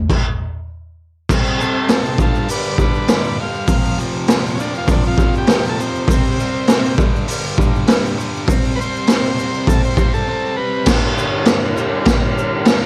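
The cassette home recording, with light reverb, carries this raw, swaggering garage rock excerpt at 100 BPM, where a biting, bright, double-tracked overdriven guitar riff and an up-front, saturated drum kit with a boomy kick open on a stop, a grainy tube shaker sits in the background from 1.3 seconds, and a buzzy vintage combo organ with light vibrato carries the melody from 1.6 to 10.9 seconds, followed by a brief break and a closing turn to G5.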